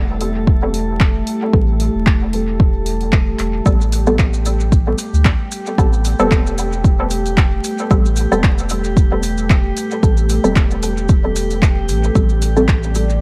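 A moody, sawtooth-based pad holding an Am9 chord opens this hazy, meditative dub techno excerpt, joined at once by a round, soft sub bass and a steady bed of vinyl crackle, with a glassy texture of drifting overtones arriving just after. The pad is deep, detuned and warbling with a vintage character, and its built-in reverb and chorus are set against sidechain pumping that also breathes through the bass and the calm, bright glass texture. An analog drum machine enters at 0.2 seconds, its handclaps and hi-hat roughened by overdrive and thrown into dub echo, and an overdriven electronic kick drum follows up front from 0.5 seconds. From 1.5 seconds a muted, mellow chord stab with a short filter pluck enters, coloured by chorus, phaser and dub echo while a filter sweep runs across it. Close, grainy acoustic maracas join the lightly swung groove at 3.7 seconds as the piece drifts on in a single unbroken section.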